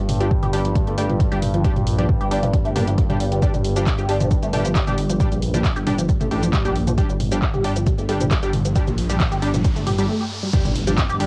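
Intense and relentless, this driving peak-time techno cut in G minor runs at 135 BPM in a straight 4/4, built on a punchy analog kick and a drum machine of crash, handclaps, hi-hat, shaker and toms, both re-recorded in a large room, under a deep, rumbling detuned saw bass and a nasal, evolving analog drone in the background. A juicy, squelchy resonant blip pluck riff drenched in phaser, overdrive, lush chorus and tape echo sits beside bright supersaw stabs, with sidechain pumping on the pluck, bass, drone and stabs. Captured on cassette in a small room, it builds through a riser that starts at 8.6 seconds and runs through a brief break at 10.1 seconds, where the drone stops, before an impact lands at 10.5 seconds.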